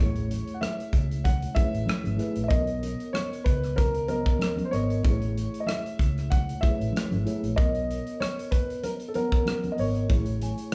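Lush 1970s-style soul with a romantic mood, this short cut from a longer piece moves between Amaj7 and Bmaj9 chords over a gently swung 16th-note feel. A warm grand piano carries the melody above a mellow, worn and slightly out-of-tune tine electric piano, while a dark, round, foam-muted fingered electric bass and an airy, polished studio drum kit sit beneath them. The kit's punchy kick, hi-hat and rim click sit up front, and soft-handed, thick-skinned congas stay in the background. The band plays together in one room with a moderate large-studio reverb, and a delicate, bell-like celesta enters at 10.4 s.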